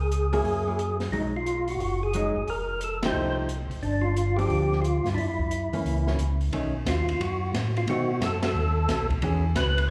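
Greasy and bluesy, this brief cut from a longer soul jazz organ trio performance swings, with a fat, lightly overdriven tonewheel organ carrying the melody through slow rotary speaker, chorus vibrato and slapback echo, its third-harmonic percussion and key click up front, while a second, round and mellow organ voice holds down the bass. A dark, clean hollow-body guitar adds compressed fingered comping with its own slapback echo, and an acoustic drum kit with a high-tuned snare, boomy kick and dark cymbals sits further back in the mix. Heard through a club's PA with a lush hall reverb, the band hits accents at 3.0 and 8.4 seconds as the harmony shifts into a new section at 6.5 seconds.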